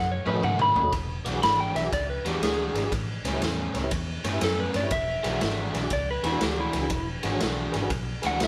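Electric blues shuffle at 120 BPM in E mixolydian, gritty and rollicking, cut from a longer piece: a bright, slightly broken-up slide guitar solos from the start over a dark, foam-muted fingered bass. An overdriven semi-hollow guitar riff and a mellow tonewheel organ with key click and slow rotary speaker in the background join at 0.3 seconds, during a drum fill that opens the first 0.9 seconds before a punchy, saturated garage kit with kick, snare, toms and ride settles in up front. The band plays live in one stone room with faint mains hum over B9, E9 and A9 chords.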